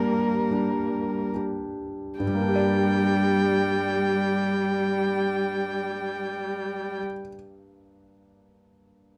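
This slow, rubato movement in 3/4 moves at roughly 35-39 BPM, slowing down through its opening 2.2 seconds, a solemn, elegiac passage for piano quartet in G minor, cut from a longer piece and resting on a G minor chord. A single muted violin carries the melody between Bb4 and G5, its con sordino tone dark and veiled with vibrato. Beneath it, a muted viola holds an accompaniment between G3 and Bb3, close and soft in attack, while a muted cello sits distant in the background on G3 as a second line, its light vibrato and portamento giving it a shadowed, sliding quality. The clear grand piano stands up front across a range from G2 to D5, natural and intimate, with audible action noise adding to its presence. The strings all stop at 7.0 seconds, leaving the piano alone until 9.2 seconds. Close, detailed microphones and light reverb keep the sound near and finely etched.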